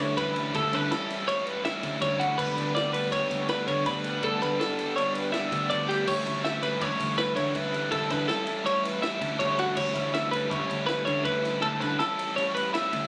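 Bright, clean twelve-string electric guitar arpeggios ring up front through this playful, wistful math rock and midwest emo passage in 5/4, cut from a longer piece, over a dark, double-tracked overdriven guitar riff, a growling overdriven electric bass and a dry compact cocktail drum kit with dark cymbals, a high-tuned snare and a punchy kick, while a warm second twelve-string sounds only briefly in the background before 0.6 seconds, all caught on a phone in the room with light reverb and compression as the harmony moves from A9/D to G/D and back.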